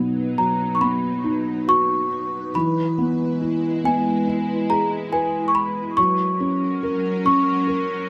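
Close, detailed microphones and a light room reverb give this short lullaby excerpt an intimate, gentle and tender character. A felt-muted upright piano sits up front with a mellow, boxy tone, carrying the accompaniment in a loose, rubato feel. Alongside it, an evolving wavetable pad holds sustained chords that slowly morph, thickened by ensemble chorus and its own built-in reverb. At 0.4 seconds a celesta enters with the melody, bell-like and sweet in its high register, struck with hard felt hammers and placed up front. The harmony moves gently from Cb to E and then to Gb, giving the passage a soft, dreamy drift.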